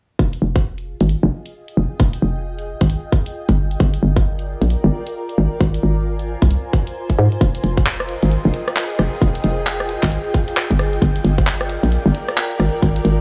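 A hollow, knocking FM bass sits up front with a bouncy, punchy attack and sidechain pumping, driving this skippy, late-night two-step UK garage excerpt at 133 BPM in F dorian with a 16th-note swing. A tight electronic kick anchors it alongside a garage kit of handclaps, rim clicks and low-pass-filtered hats and snare, with a filter sweep running across the drums. From 1.0 seconds a blurred, granular cloud pad fades in with its own reverb and pumping, drifting over chords that cycle through Fm9, Gm7 and Ab69 twice before closing on Absus2 around 12.6 seconds, all set in light studio reverb.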